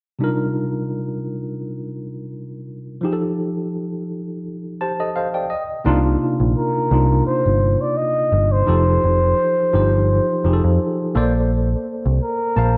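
A bucket-muted trumpet carries the melody in this smooth, late-night R&B piece. Its veiled, breathy tone has a soft attack and scooped notes, played in an intimate jazz style with a slapback echo, and it enters at 6.6 seconds. Before that, a worn, slightly out-of-tune tine electric piano sets the mood on its own with Cm11 and F9 chords. The piano is lightly overdriven and sounds as if played through built-in speakers, and it plays a fill starting at 4.4 seconds before a brief break in the harmony. A deep, round dub bass with tube saturation arrives at 5.9 seconds, sitting up front and amped as the chords return and move on to Bbmaj9. The tempo is an unhurried 85 BPM in C dorian with a light swing, and the whole piece sits in a moderate echo-chamber reverb with a small-room ambience.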